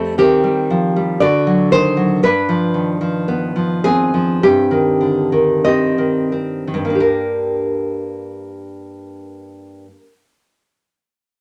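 Melancholic and wistful, this brief romantic excerpt for solo classical guitar moves in a rubato 2/4, its full-bodied, up-front nylon-string guitar fingerpicked with audible finger squeak and a deep classical tone, slowing from 1.2 to 7.0 seconds through chords such as Cm/Eb, D7 and G7 before settling on Gm, all in moderate studio reverb.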